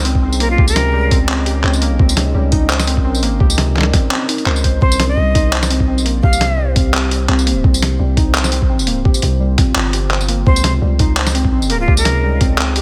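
A breathy, bright jazz flute with vibrato and 12-bit sampler grit and delay drifts in with short phrases at 0.4, 4.8 and 10.5 seconds over a tense, spacious half-time drum and bass groove, where a thumpy, gritty, pitched-down electronic kick and an up-front boom bap sampler kit of handclaps, hi-hat, tambourine and a medium-tuned snare sit in studio reverb, a long, mellow, tube-saturated 808-style sine bass holds the low end, a warbling, lo-fi, dusty pluck spins dark arpeggios through chorus and delay, and a deep, moody ambient pad with sidechain pumping sustains chords in the background of this excerpt from a longer piece.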